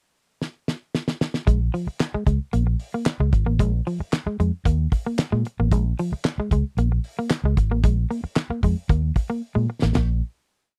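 Cool and driving, this short funk piece opens with a pickup bar in which a damped 70s drum kit sets off with a fill at 0.4 seconds. At 1.5 seconds the band settles onto a single Bb7(no3) groove, the drums laying down a heavy on-the-one beat with a fat snare, tight kick, hi-hat, ride cymbal, toms and handclaps, all dry and mid-forward. Up front beside them, a vintage foam-muted fingered electric bass plays a round, punchy, syncopated riff anchored on the downbeat, peppered with muted ghost notes and chromatic approach notes. A clean, compressed semi-hollow electric guitar adds a muted single-note line with a hollow-body tone, sitting a little lower in the mix. Another drum fill at 9.4 seconds leads into a brief final chord, all captured in a close, dry 1970s-style studio sound.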